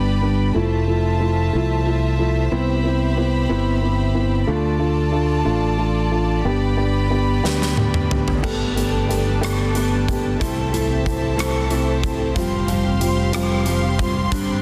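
A dark, woody upright piano and a growly, up-front fingered electric bass carry this swaying, heartfelt six-eight pop ballad in C major at 61 BPM, with a rich, softly bowed string section sustaining chords above them, a huge arena drum kit with bright cymbals and a soft-clipped snare arriving at 7.5 seconds via a fill, and a full-bodied fingerpicked acoustic guitar adding background arpeggios from 8.4 seconds, all in a dense, heavily limited modern master with light small-room reverb.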